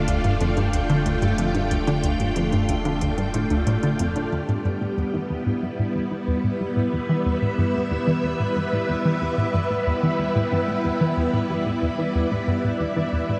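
Ambient, sequencer-driven space music at 92 BPM in E phrygian, hypnotic and expansive, cut from a longer piece. An up-front vintage string machine holds lush sustained chords with ensemble chorus and shimmer reverb over a punchy, funky analog bass riff soaked in chorus and delay. A round sine sub bass and background electronic hi-hat and congas with metallic hats and delay sit beneath until both stop at 4.3 s, when the harmony moves from Dm/E to Em and a filter sweep runs through the analog bass as the dreamy mix floats in a long hall reverb.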